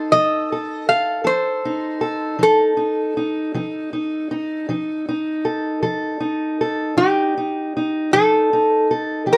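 A slow, unhurried 12/8 pulse rolls along at 52 beats per minute, counted in dotted quarters, giving this short acoustic country blues fragment a swaggering, laid-back feel. A metal-body resonator slide guitar carries the melody from G4 to F5, its metallic, nasal tone sitting up front as it is played with fingerpicks and a slide. Beneath it, a fingerpicked steel-string parlour guitar provides accompaniment between F3 and A4, sounding dark and boxy and placed up front as well, though a touch lower in level than the lead. The two guitars play together throughout the full 9.4 seconds over an F7 chord, cut from a longer piece. The sound is dry and intimate, captured with close, detailed microphones and little reverb.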